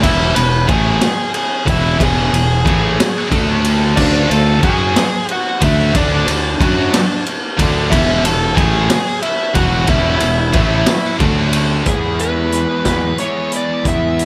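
Dry, this anthemic, cathartic excerpt of quiet-loud alternative rock moves at 61 BPM in a straight 6/8 in E mixolydian, with a gritty raw garage drum kit and its boomy kick up front, a growly, punchy fuzz fingered bass, and a bluesy overdriven lead guitar carrying the melody, while a double-tracked high-gain guitar riffs in the background until 11.9 seconds, two very quiet thick fuzz guitars riff alongside throughout, and a twangy, compressed twelve-string electric guitar then adds clean arpeggios to the close.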